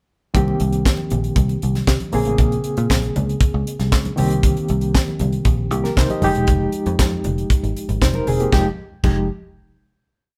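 A barky, reedy electric piano sits up front, lightly overdriven and shimmering with fast tremolo as it holds drop-2 chords dressed with grace notes and short fills, moving through Cm7, Bbm9 and Fm9 over this short, sultry disco piece. Beneath it, a picked electric bass with a dark, foam-muted, round tone plays a syncopated disco line, slipping in chromatic approach notes. A tight funk drum kit drives a four-on-the-floor beat with sixteenth-note hi-hats, a high-tuned snare layered with handclaps, a tight kick and a crash cymbal, all sounding dry and polished. Very quiet congas with thick skins add a syncopated groove under the band. The whole group plays together in one room with light reverb, running a single verse before landing on a final chord at 8.5 seconds.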